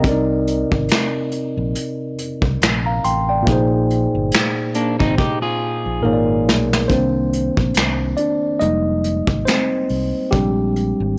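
Nostalgic and melancholic, this lo-fi hip hop passage sways on a gently swung sixteenth feel in 4/4. A worn, slightly out-of-tune tine electric piano sits up front with a clean, direct tone, carrying chords from Cm7 through Bb9sus4, Fm11 and Bb13, and takes the lead as soloist from 6.9 seconds. Beneath it, a round, amped fingered electric bass carries a touch of transformer saturation. A vintage brush drum kit, muffled with a rolled-off top, a punchy kick and a medium-tuned snare, plays hi-hat and finger snaps and adds a drum fill just before the solo. A dark, slightly broken-up electric guitar adds a brief second line from 4.8 to 6.7 seconds, trailed by analog delay, while light reverb and a small room ambience frame a dry, gritty hardware sound.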